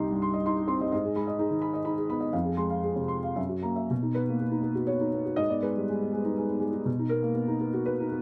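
A felt-muted upright piano sits up front in a light reverb, its tone soft, mellow and a little boxy, with a dark, intimate colour. This short neoclassical minimalist piece, cut from a longer work, moves in 3/4 at a tempo drifting between 110 and 129 BPM, played rubato so the pulse breathes freely. The piano plays alone throughout its 8.2 seconds, spanning a range from C2 to C6. The harmony opens on Cm and passes through Abm, Fm and Gb7, and at 3.9 seconds a new section begins on B, moving to Abm and back to B. The mood is peaceful and close, like music heard in a quiet room.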